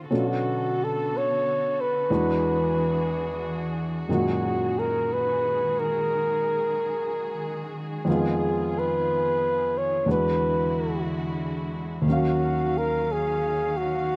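A swung, slow 4/4 pulse carries this smoky, melancholic jazz ballad excerpt, where a breathy flugelhorn with light vibrato sings the melody up front from 0.2 seconds over an intimate grand piano, its action noise audible, and a veiled, con sordino chamber string section holding dark, soft-edged bowed chords through changes like Bm7, Gb69 and Ebm9, all captured close and dry.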